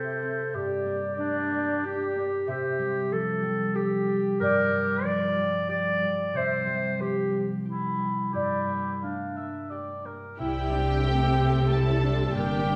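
A solo clarinet sits up front in this moving, uplifting cinematic fragment in C mixolydian, played rubato in 3/4 at around 93 BPM. It shares the second line with a distant, mellow oboe and a pure-toned small flute group, which drops out at 8.7 s, while a concert harp rings with warm, fingerpicked arpeggios underneath. At 10.4 s a lush string orchestra enters: distant, vibrato-rich violins take the melody and a second line, violas add expressive accompaniment, and cellos join a focused double bass section on the bass, all bathed in a wet scoring-stage reverb.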